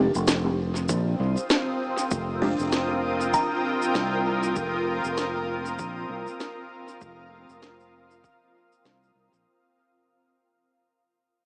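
A buzzing, woody kalimba with dub echo, a muted, detuned chord stab soaked in phaser and lush chorus that drops out at 2.6 s, and an up-front fingered electric bass with tube saturation under a filter sweep open this deep, hazy ambient dub fragment together, soon joined by an overdriven electronic shaker and snare, a blurred granular cloud pad from 0.6 s and a layered, deep electronic kick from 0.9 s, the whole mix fading out through a huge ambient reverb with a small-speaker sound.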